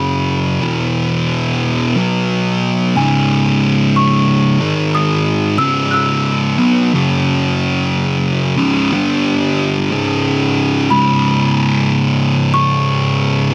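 Metal in C# minor at a slow 60 BPM with a swung 4/4 feel, this brooding, hypnotic excerpt sets a thick fuzz guitar riff, double-tracked and up front, against a worn celesta melody that sits in the background with a slapback echo. The guitar's picked, distorted low end grinds through power-chord movement around C#, while the celesta's bell-like, slightly out-of-tune tone adds a delicate, sweet, dark voice above it. Both parts play throughout in a moderate studio reverb, with the music shifting into a new section at 10.9 seconds.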